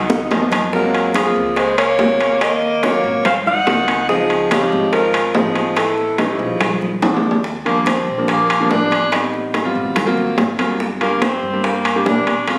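Danceable and sophisticated, this Afro-Cuban jazz excerpt pairs a breathy, subtone alto saxophone melody with scooped notes until 7.0 s against a vintage tenor saxophone second line that steps up to solo from 7.4 s, over clear concert grand piano with deep bass, a woody pizzicato upright bass, ringing metal-shell timbales, brief drum fills, and ringing congas with tight bongos sitting in the background, set in a moderate large-studio reverb captured by a phone in the room.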